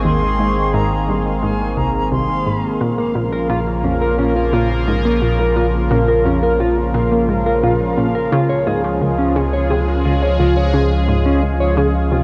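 Drenched in a vast, long-tailed reverb and the wobbling pitch drift of worn cassette tape, this fragment of ambient, sequencer-driven space music feels expansive and cosmic. A pure, vibrato-laden wooden flute sings briefly before stopping at 2.8 seconds, while a bright, detuned resonant pad sweeps through sustained chords up front. Beneath it, a round, nasal analog pluck riff and a deep sine sub bass hold the low end, a bubbling stepped-filter texture fades in far in the background, and a dark, clean electric guitar joins with fingered arpeggios at 3.0 seconds.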